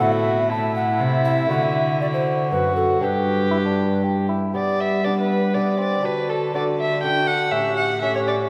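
Festive and courtly, this brief cut from a longer Renaissance-style consort dance moves at 120 BPM in a straight 3/4 in G major, with a fresh phrase beginning at 4.5 s. An airy, hollow tenor recorder carries the tongued melody with a touch of chiff and vibrato, while a dark, gut-strung violin sits up front with a second line. Beneath them a delicate fingerpicked lute on doubled strings sits in the background, a mellow, vintage-toned bassoon fills the accompaniment, and a rich, close cello anchors the bass, all wrapped in a lush church reverb.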